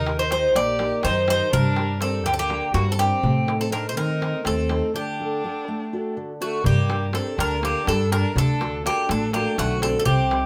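A bright, metallic bouzouki leads this tense, dramatic Greek folk passage in 7/8 from the first moment, sitting up front over a rich, vibrato-laden bowed violin line, a full-bodied fingerpicked steel-string guitar and a woody, thumpy pizzicato upright bass. A crisp, saturated metal-shell darbuka played with hard hands joins at 0.1 seconds, and the band moves through a break from 4.9 to 6.7 seconds before a new section begins. Light reverb gives the ensemble a touch of space in this excerpt cut from a longer piece.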